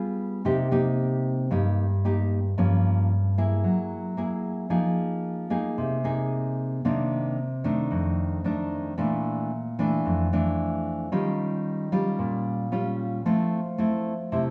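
Bathed in a lush large-room reverb, this intimate, melancholic bossa nova fragment at 112 BPM in a straight 4/4 features a single fingerpicked nylon-string guitar, full-bodied and deep with a classical character and placed up front, moving through jazzy chords from Cm7 through Gm7b5, Gb9 and Bbmaj7#11 before settling on Fmaj7 at 13.2 seconds.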